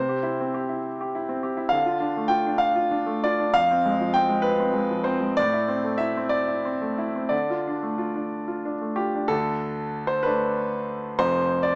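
Neoclassical minimalist piano in a rubato 6/8, intimate and melancholic, with a bright, brilliant concert grand playing solo and up front, deep in the bass and smooth and vintage in tone, moving through chords from C to Dm, Fm and Am before a second section begins at 9.3 seconds, all heard in a moderate studio ambience with a small-speaker sound in this short cut from a longer piece.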